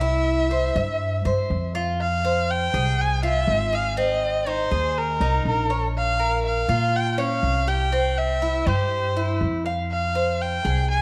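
Warm and nostalgic, this short excerpt from a longer piece blends Cuban son and guajira at a steady 121 BPM in straight 4/4, set in F minor and tuned to A4 = 436 Hz. A single bowed erhu carries the melody up front, its rich, smooth tone shaded with vibrato and portamento and kept even throughout. Beneath it, a Cuban tres picks bright, metallic arpeggios on its double strings, some of them octave-doubled, sitting a little quieter in the mix. The upright bass is plucked pizzicato on steel strings, sounding woody, dark and thumpy as it holds the low end close to the listener. All three parts play from start to finish, moving through a brief opening passage on C before a longer stretch from 2.0 seconds that cycles through Fm, Abadd9, Bbm and C. A light reverb gives the acoustic instruments a gentle sense of space.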